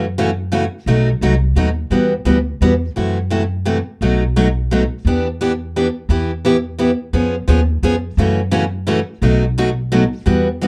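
A picked steel-string acoustic guitar and a pizzicato upright bass open this fiery, swinging excerpt of jazz manouche together at 172 BPM in 3/4, cycling through E minor changes such as F#m7, B7 and Emadd9 before the second pass begins at 6.1 s with Em and C#7. The guitar sits up front with a bright, fresh-stringed sound and audible finger squeak, while the bass offers a woody, thumpy gut-string tone beneath it. A small room with moderate reverb and a dark, warm production frame the whole recording.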